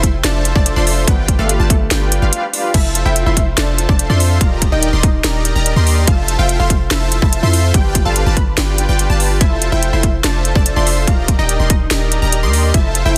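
Over a half-time future bass groove, a hard-clipped electronic kick and a trap kit with sharp snare, metallic hats and crash drive this bright, playful passage cut from a longer piece, with a deep, boomy 808-style bass and a smooth, evolving soft supersaw riff both pumping with the sidechain, a punchy, wave-folded unison pluck carrying the tape-echoed melody, a second, full-bodied unison pluck tucked in the background with high arpeggios, and a very quiet fingerpicked Celtic harp ringing beneath, all set in light digital ambience with a dense, heavily limited master and a brief break from 2.3 to 2.7 seconds.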